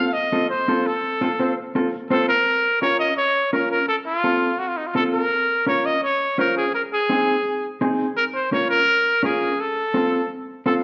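Latin music at 168 BPM in Bb minor, cut from a longer piece, with a driving, passionate mood. A breathy trumpet sits up front with the melody, its vintage, whispered, intimate pop-style tone carrying vibrato and a soft attack, while a mellow electric guitar accompanies with a dark, clean, fingered and compressed sound over chords moving between Bbm, F and Ab. Both parts play throughout, bathed in a wet large-studio reverb, and the sound is rolled off above 7.5 kHz.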